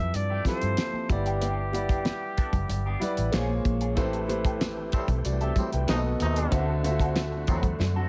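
This short excerpt of lush 1970s-style soul opens with a clear, vintage flugelhorn singing the melody with vibrato over a natural, long-sustaining grand piano and a dark, round, foam-muted fingered bass, both sitting up front. A dry, damped drum kit with a fat snare and tight kick sets a straight, romantic groove, while a bright, twangy guitar riff through a small old amp, coloured by wah and spring reverb, sits in the background. Soft-handed, high-tuned congas join at 0.5 seconds, very quiet in the mix. The flugelhorn drops out at 3.6 seconds, and at 4.0 seconds a gritty, overdriven tonewheel organ with fast rotary speaker arrives on sustained chords alongside a faint jingly tambourine. A nasal, straight-muted trombone section with a smooth top adds stabs from 4.9 seconds, and the drums close the passage with a fill in a small, intimate room.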